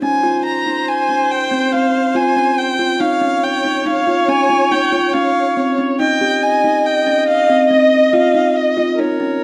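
Pensive and urgent, this brief excerpt of contemporary chamber music in 7/4 sets a dark, sul tasto violin melody up front over a distant, vibrato-shaded viola second line, while a mellow, fingertip-plucked kalimba rings out arpeggios on a woody board, all three heard throughout in a moderate recital hall reverb as the harmony moves from a rootless Bbmadd9 to a rootless Abmaj7 at 6.0 seconds.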